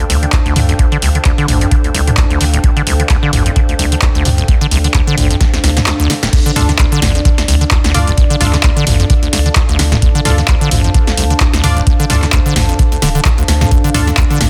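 A squelchy, resonant square-wave acid bass drives this gritty acid house cut in D minor at 130 BPM, riding a swung 16th-note groove alongside a round sine sub bass, a deep kick re-recorded in a large room, and a punchy, tape-warm analog drum machine whose soft-clipped snare, claps, hats, toms and crash sit up front. Two chorused pads pump against the sidechain underneath, one warbling, detuned and nostalgic in the background, holding a D minor chord, the other dark, moody and ring-modulated. After a drum fill and band accent, the drop lands at 6.3 seconds, and moments later a nasal, band-passed sawtooth chord stab enters, drenched in cassette grit and dub echo, over a dense, heavily limited master.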